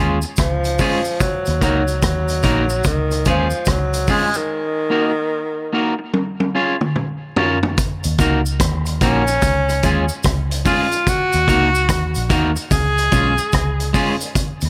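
A breathy, whispered tenor saxophone carries the melody up front, with soft attacks, vibrato and scooped notes echoed on tape, in this laid-back, meditative roots reggae excerpt in Eb minor at 73 BPM with a swung feel. A twangy electric guitar at the edge of break-up, also fed through tape echo, accompanies over a dark, round, foam-muted electric bass and a gritty, saturated vintage drum kit with a tight kick, hi-hat, rim clicks and toms, while a distant cabasa sits low in the mix. A drum fill runs from 6.1 to 7.8 seconds before the chords move between Ebm and Db in a small room with light reverb.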